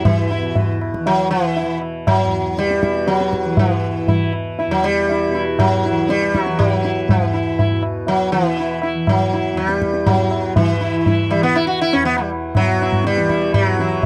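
Hindustani classical music in a solemn, longing mood at 120 BPM in 7/4, cut from a longer piece, with an up-front, round sitar carrying the melody over its buzzing sympathetic strings, a mellow tanpura drone shimmering softly beneath, and low-tuned, short-ringing tabla entering at 0.1 seconds, all captured in a dry, close 1970s-style studio sound with light reverb.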